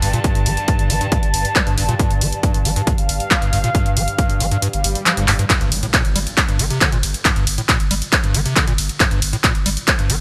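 Bright 1980s-style digital production with light reverb frames this hypnotic, driving excerpt of peak-time techno at 137 BPM, where a heavy, overdriven electronic kick and a punchy, tape-warm analog drum machine of handclaps, hi-hat and ride cymbal drive beneath a squelchy, gritty acid bass riff with chorus and delay, a deep saturated sub bass, a swarming, tense granular drone and a warbling, nostalgic lo-fi pad, until the kick drops out at 4.6 seconds, an electronic swell rises from 4.8 seconds, and at 5.5 seconds the drone and pad fall away as a drum fill leads into the drop and a background impact.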